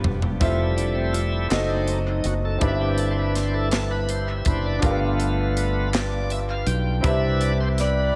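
A short drum fill on a crisp fusion kit opens this slow, uplifting gospel excerpt in 6/8 at 54 BPM, with clear concert grand piano, a round electric bass and a mellow, distant French horn section sounding from the start. At 0.4 seconds a bright tonewheel organ enters and takes the solo, its shouting tone lightly overdriven and turning through a slow rotary speaker. Very quiet, band-limited group handclaps join at 1.5 seconds, while the harmony moves through Fmaj7, F#dim7, Cmaj7/G and G7 before settling on Cmaj7, with the intimate piano showing audible action noise and long sustain and the punchy bass sitting up front. A tight saxophone section carries the melody with vibrato only in the closing moments, entering at 7.8 seconds. The jubilant mix is echo-heavy, with light small-room reverb around the polished, airy drums.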